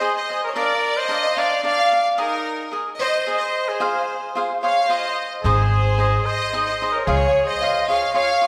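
Mexican folk mariachi in 3/4 at 111 BPM and Ab major, this brief excerpt from a longer piece feels passionate and dramatic, with a clear, smooth violin section carrying the melody up front with light vibrato while a bright, punchy trumpet sings a classical-style second line. A crisp, picked cavaquinho supplies accompaniment through chords moving from Ab and Bb to Ebsus4, Fm and Db, and a woody, thumpy pizzicato upright bass on gut strings appears only from 5.4 to 7.3 seconds. The whole sits in a wet recital-hall reverb with a 1.7-second decay, giving it the air of a church or concert hall.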